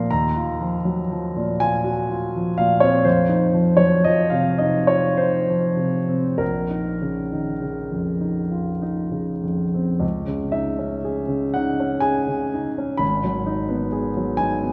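A close, intimate concert grand piano carries this hazy, wistful fragment of impressionist solo classical music, its deep bass, smooth tone and audible action noise giving it a vintage, up-front presence inside a lush concert hall reverb. In a slow, rubato 3/4, drifting between 48 and 66 BPM and tuned to A4 = 439 Hz, it moves through suspended and minor harmonies in B-flat minor before shifting to C-sharp minor at 10.0 seconds. There it settles on a C#madd9 colour, then a G#m7, as the excerpt ends at 14.7 seconds.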